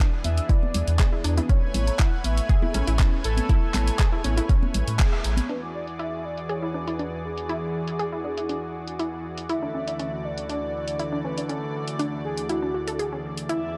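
A dark, warm production with light reverb carries this euphoric, uplifting progressive house excerpt, where a thick, airy pad holds sustained chords under a punchy, detuned pluck arpeggio with 12-bit grit and dub echo, while a smooth, expressive synth lead sings a vibrato-tinged melody through analog chorus. A deep, up-front electronic kick and a round analog bass anchor the opening alongside the handclaps and hi-hats of a low-pass-filtered deep house kit, with soft-handed congas and woodblock in the background, and most parts breathe with sidechain pumping. After a band accent at 5.0 seconds, the kick, bass and hand percussion fall away, so from 5.5 seconds the pad, pluck, lead and filtered kit drift on together.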